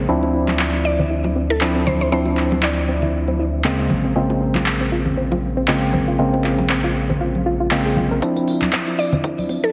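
Deep house at 118 BPM in D minor with a 56% swing on the 16ths, smooth and warm, this excerpt sets a hollow, organ-like percussive stab up front with chorus, sidechain pumping, dub echo and a filter sweep over a round, deep analog bass that pumps until 8.2 s, while a soft, nasal pluck arpeggiates in the background, bright, dry bongos and congas and a drum kit with smooth hats and handclaps join in, a woody, detuned mallet-like synth pluck carries the melody from 0.8 to 3.0 s and returns at 9.0 s, and a punchy, high-passed electronic kick arrives at 8.2 s for a build-up, the chords moving from Dm9 to Bbm9 and back under a lush hall reverb and a heavily compressed, radio-like sound.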